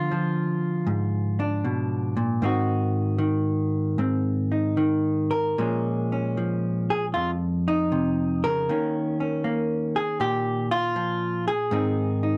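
A dark, warm production with light reverb frames a single hollow-body jazz guitar, clean and compressed, sitting up front in the mix. This short solo jazz excerpt, cut from a longer piece, moves at 78 BPM in 4/4 with a swung eighth-note feel and loose rubato, centred in Ab mixolydian. The picked electric guitar carries the whole 12.4 seconds alone, ranging from F2 up to Bb4. Its chords pass from Ddim7 through Ab7, Bbm7 and Eb5 before settling on Ab at 11.7 seconds. The mood is warm, with an easy swing.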